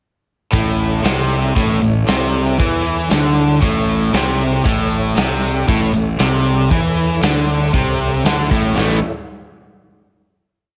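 Classic rock with a sunny, swaggering mood, this short complete piece rides a straight four-beat groove from 0.5 seconds before landing on a final chord at 8.8 seconds. Two overdriven electric guitars carry a picked single-note riff low in their range: one is biting and up front, the other a warm cranked stack tone. A dark, fuzzed fingered electric bass doubles that riff in driving eighth notes, sounding round and punchy through its direct and amped tone. The big acoustic drum kit sits up front in a large room, its tight kick, medium-tuned snare, hi-hat and tambourine shaping a 60s soul groove with a mid-forward, rolled-off top. Underneath, a very quiet tonewheel organ holds soft, flute-like chords with swells and changing inversions, colored by chorus vibrato and a slow rotary speaker, all set in a light reverb.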